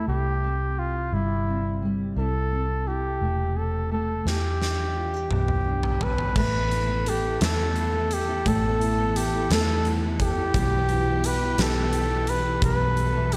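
A close-miked jazz-style flugelhorn sings an aching melody with scooped notes over thumb-plucked, double-tracked nylon-string guitar with slapback echo and a dark, round, foam-muted fingered electric bass in this dramatic six-eight pop ballad in A minor at 57 BPM. A huge arena drum kit with a fat snare, punchy kick and bright cymbals then crashes in with a fill at 4.3 seconds, and a warm studio string section joins at 6.4 seconds with smooth, expressive sustained chords full of vibrato and portamento, all bathed in a lush hall reverb that gives a big arena sound.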